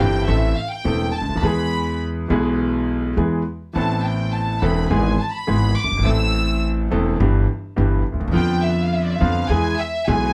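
Passionate and elegant, this rubato tango excerpt in A minor at 104 BPM sets a distant, reedy violin section with light vibrato and a period gut-string tone over an up-front, clear concert grand with deep bass and a woody, thumpy pizzicato upright bass, moving from Am through E and Amadd9 to a closing E at 9.5 seconds under light reverb and close, detailed microphones.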